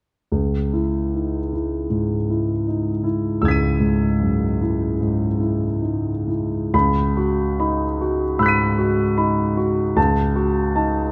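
Rubato in 4/4 at 62-82 BPM, this wistful, mysterious impressionist classical solo piano piece in C# minor, tuned to A4 = 444 Hz, features a warm concert grand with deep bass, natural tone and long sustain spanning C#2 to D#7, placed up front and captured in close detail within a moderate concert hall reverb, opening on a C#m11 chord, moving into a new section at 6.7 seconds and arriving on F#m/C# at 10.0 seconds before the excerpt breaks off at 11.1 seconds.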